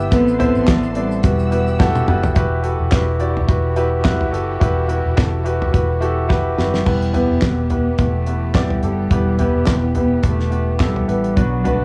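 Piano-driven pop with a dramatic, bittersweet mood and a lightly swung feel, built on a clear, polished baby grand up front, a round, foam-muted electric bass and a dry, damped 70s drum kit with a fat snare, tight kick, handclaps and fills near 1.8 and 6.3 seconds. A boxy, nasal bowed cello carries the melody through analog delay, falling silent after 2.1 seconds and returning at 6.6 seconds, while a very quiet studio string section holds sustained chords and a grainy tube shaker sits in the background only for the opening seconds. The whole excerpt has a small-room ambience and the warble of worn cassette tape with drifting pitch.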